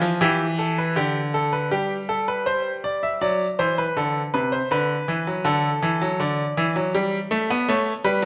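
Classical, baroque-style two-part invention for solo grand piano in G major, moving at an elegant, joyful 80 BPM in a straight 3/4, cut from a longer piece. The piano sounds brilliant and intimate, sitting up front with long sustain and audible action noise as it ranges from C3 to E5. A wet recital hall reverb surrounds it while the harmony passes from Emadd11 through G/D, D69 and Gadd9 before landing on A at 7.7 seconds.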